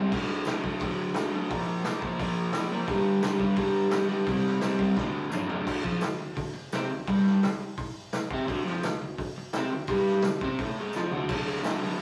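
A rough rehearsal-room recording with saturated tone, small-room ambience and a stone-room reverb carries this swaggering, gritty garage rock fragment, where a crunchy, double-tracked overdriven electric guitar with spring reverb picks a riff up front over a punchy, mid-forward acoustic drum kit with a rolled-off top and fills at 5.0 and 10.9 seconds, while a jingly, bright tambourine sits close and dry in the background.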